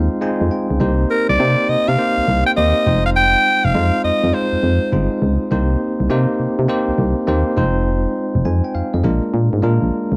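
A dry, close room sound with a 1970s studio feel frames this bouncy, punchy new jack swing excerpt at 102 BPM, where a bell-like tine electric piano opens with a short fill before accompanying over Fm7 and Cm7 chords, a round, fast-attack FM bass holds the low end, and a raspy, gritty alto saxophone with tape echo steps forward for a brief solo phrase from 1.1 to 4.9 seconds.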